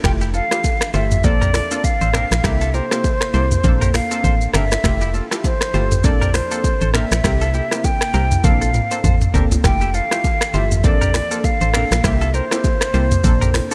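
A bright, 1980s-style digital production with light reverb frames this joyful, breezy afrobeats excerpt, where a hollow, vibrato-touched concert flute carries the melody through digital delay over a warbling analog pluck, an ethereal pad held very quiet, a dark, percussive FM bass and a produced afro-pop kit with deep kick and metallic hats up front, while faint congas and bongos add color and a twangy, clean electric guitar riff entering at 0.2 seconds sits in the background, and a drum fill arrives at 8.4 seconds.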